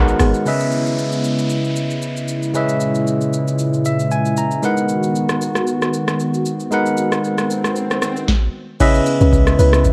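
A bell-like tine electric piano sits up front in this deep, hypnotic amapiano excerpt at 115 BPM, its bright, clean accompaniment moving from C#m7 to G#m7 in C# dorian over a swung 16th-note feel, with a fill at 3.6 seconds. Beneath it, a hollow, airy, flute-like pad holds sustained chords, softened by chorus and pumping against the sidechain. A booming, overdriven analog drum machine, re-recorded in a small room, supplies kick, crisp snare, metallic hi-hats, rim click, shaker and crash. A round, percussive log drum bass appears only for a moment at the start and returns at 9.2 seconds, while a dark, soft chord stab with chorus and digital delay flashes at the very beginning and again in the drop at 8.8 seconds, as the harmony settles back on C#m7. An electronic downlifter and swell drift low in the mix, and the whole recording carries light reverb and the worn, warbling pitch drift of old cassette tape.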